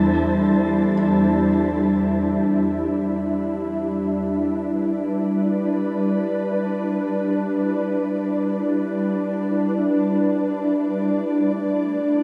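A wet concert-hall reverb, with a decay of about 2.4 seconds, surrounds this reflective, melancholic ambient fragment in E minor, which moves in free time and is tuned slightly low to A4 = 439 Hz. Up front, an ethereal pad of detuned, wave-folded sawtooth and triangle layers holds full-bodied sustained chords from E2 to E5 throughout, its slow attack and long release wrapped in ensemble chorus. At the opening, a very quiet felt-muted upright piano touches a single E5 for under a second, its thin felt and audible action noise giving an intimate, natural feel, while a breathy, wind-like tuned noise texture sits in the background between A4 and A5 until 2.1 seconds. From 2.8 seconds, muted, warbling synth keys with a dark, vintage character play barely audible arpeggios. The harmony drifts from Cadd9 over E to a long Em7 before settling on a bare D5 near the close.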